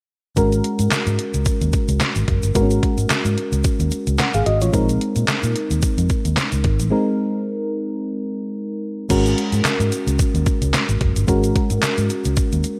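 A mellow, round FM electric piano with a chorused shimmer and a faint noise layer provides the accompaniment in this slick, late-night early-eighties boogie funk excerpt, alongside a dark, foam-muted fingered electric bass, a detuned 8-bit digital drum machine with thumpy kick, fat snare, handclaps and tape-warm hi-hats, and a grainy egg shaker tucked in the background, all under light reverb with a break at 6.9 s.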